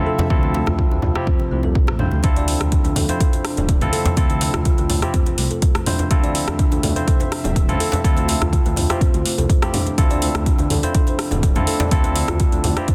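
A straight 4/4 groove at 124 BPM drives this afro house excerpt in D minor, earthy and spiritual in mood, resting on a single Dm7 chord throughout. A deep, up-front electronic kick arrives at 0.3 seconds. A layered deep house kit follows at 0.7 seconds with metallic hi-hats, rim clicks, toms and a soft-clipped snare, while very quiet congas ring out and a close, dry djembe adds acoustic weight. Underneath, a dark detuned saw bass rumbles with tube saturation and sidechain pumping, its unison voices beating against each other. A woody kalimba plays arpeggios with vintage 12-bit sampler grit, digital delay and pumping, alongside barky, lightly overdriven electric piano stabs heard through a combo amp with their own delay and pumping. A smooth, chorused analog pad holds sustained chords very quietly beneath the other parts, and the dense, heavily limited master carries light reverb and digital ambience.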